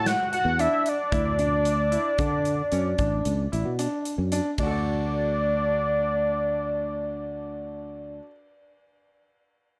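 A fat, detuned sawtooth lead carries the melody up front with chorus, tape echo and vibrato, over brilliant grand-piano arpeggios and a growly fretless bass treated with analog chorus, in this bright, intricate snippet of progressive instrumental music in 7/4. A big acoustic rock kit with a punchy kick and bright cymbals drives the first half, then drops out at 4.7 seconds, leaving lead, piano and bass to ring on in moderate studio reverb.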